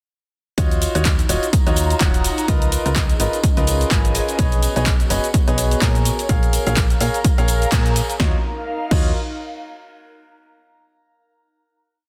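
A four-on-the-floor electronic kick at 126 BPM drives this short piano house piece in 4/4, with a 16th-note swing and programmed hats and backbeat from a punchy analog drum machine supplying snare, handclaps, hi-hat, shaker and crash, both drum parts overdriven and re-recorded in a large room. The mood is soulful and bittersweet, set in Eb minor over a chord cycle of Ebm9, Db13, B69 and Bbm7. A bright, woody upright piano plays dotted-rhythm chords in close voicing, treated with sidechain pumping and digital delay. Beneath it, a round, dark FM bass with a fast attack follows its own dotted rhythm and pumps against the kick, while a tambourine sits close but in the background. An airy, breathy pad with a noise layer, chorus and phaser holds slowly shifting chords across the whole piece. The full band hits an accent at 7.7 seconds, and the drop gives way at 8.2 seconds to a final Ebm9 chord, with the pad ringing on until 10.1 seconds, all in a dense, heavily limited modern master with digital ambience.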